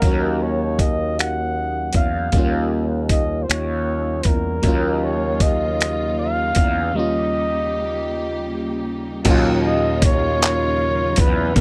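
Slow, late-night six-eight R&B with a yearning mood, cut from a longer piece. A breathy, close-miked flugelhorn carries the melody up front with scooped jazz-style notes and tape echo, over a glassy, bell-like FM electric piano with chorus, a growly, punchy fretless bass and a gritty, compressed sampler-style drum kit of thumpy kick, hi-hat, snaps, handclaps and crash. At 4.6 seconds a dark, woody string section enters quietly with lush sustained chords, and a break arrives at 6.9 seconds in a dry sound.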